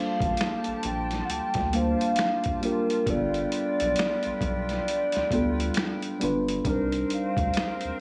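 The hollow, woody synth lead opens at once alongside a worn, slightly out-of-tune tine electric piano, both treated with phaser and the lead also with chorus, its clarinet-like tone sitting between Bb4 and G5 with a gentle vibrato. This short cut from a longer R&B and neo-soul piece moves at a slow 67 BPM in 4/4, with a lazy 16th-note swing and a smooth, soulful mood over chords of Gm9, G7 at 3.1 seconds and Cm7 at 6.7 seconds. Further back, a breathy, distant small flute group holds sustained chords with an unsteady, tongued quality. From 0.2 seconds a rubbery, bouncy square bass with a filter pluck anchors the low end, joined by a gritty, pitched-down boom bap drum kit of thumpy kick, medium-tuned snare, hi-hat and finger snaps. The drums carry a compressed, tape-warm character, re-recorded in a small room, and light digital reverb wraps the whole mix.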